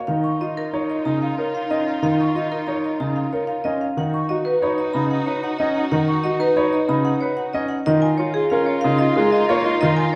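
A marimba struck with medium hard mallets opens this bright, propulsive excerpt of minimalist pattern music in 6/4, carrying a percussive, boxy melody while a baby grand piano sits up front with short-sustained accompaniment. A grand piano spins polished arpeggios in the background, a mellow soprano saxophone traces a smooth second line behind them, and a distant chamber string section holds bowed, vibrato-rich chords. The chords move from Bbsus4 to B at 4.0 seconds and to Dbadd9 at 7.9 seconds, all set back in a large, reverberant studio space.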